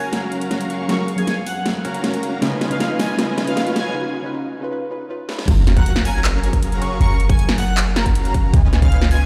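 Future bass at 157 BPM in a half-time feel, this lush, euphoric passage in F# major is cut from a longer piece and moves between F#maj7 and C#9 chords. An airy, dreamy lead carries the melody with a soft attack, chorus, vibrato and digital delay, while a soft, round, wave-folded pluck adds gentle accompaniment through the build-up. Beneath them, a dark chamber string section holds smooth bowed chords in the background, and a huge, thick supersaw riff runs through a low-pass filter, all four parts pumping against the sidechain. A big-room dance kit with a huge snare, metallic hats, handclaps and crash stays up front, playing fills before a short break, and a very quiet riser and sub drop begins at 1.5 seconds. At the drop at 5.5 seconds, a punchy, tape-warm kick and a deep, boomy 808-style bass arrive, as the lead shifts to mellow background arpeggios. A lush hall reverb and a bare-room, big-system sound give the whole mix a spacious, high-passed sheen.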